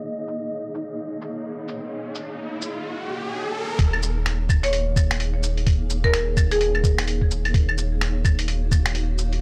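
A dry, gritty recording with a low-pass filter over the mix sets a ghostly, melancholic tone for this future garage fragment in Eb minor, running at 128 BPM in 4/4 with a 60% swing on the sixteenths. A cloudy, granular pad holds sustained chords throughout, blurred and slowly evolving with sidechain pumping, while a breathy, wind-like noise texture on Eb5 drifts alongside it at the start and an electronic riser rises over the filter sweep of the opening. A muffled, pitched-down sampler-style kit of cabasa, claves, finger snaps and hi-hat carries the groove from nearly the beginning, with a tape-warm, compressed character. At 3.8 seconds the harmony moves from Bbm7 to Ebm9 as a thumpy electronic kick and a deep, round dub sub bass arrive, the bass sitting up front and pumping against the sidechain. From 4.6 seconds a bright, woody marimba adds a short melodic line between Ab4 and Db5, trailed by tape echo.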